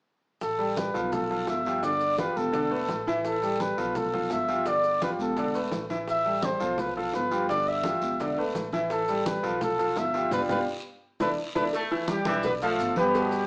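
Driven by a danceable, passionate salsa groove, this cut from a longer piece sets damped congas, tight high-tuned bongos and cowbell, a raspy guiro and grainy maracas over a woody, thumpy pizzicato upright bass, while a brilliant upright piano with audible action noise sits up front. A clear, punchy flugelhorn with vibrato carries the solo melody until 11.6 seconds, while a drum fill and band accent run from 10.3 to 11.7 seconds. Then a mellow horn section takes over the melody at 12.1 seconds above a distant, roomy saxophone section, all heard through wet reverb from further back in the room with a small-speaker sound.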